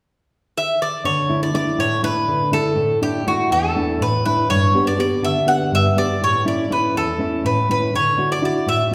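Greek folk music for a small bouzouki band, bright and joyful, moving in a lively 7/8 at 243 BPM counted in eighths with a straight feel in D major. The Greek bouzouki carries the melody from 0.6 seconds, its picked double strings ringing metallic and sparkling, some of them doubled at the octave, sitting up front between F#4 and F#5. At 1.0 seconds the nylon-string guitar joins as accompaniment, thumb-plucked on fresh strings with a dark, deep classical tone that spans from E2 up to G4 and also sits up front. The harmony moves through Dsus2, Asus4, G and A before settling on Dadd9 near the close. The two instruments bloom in the reverberant acoustic of a church or concert hall, giving this short cut from a longer piece a resonant, airy glow.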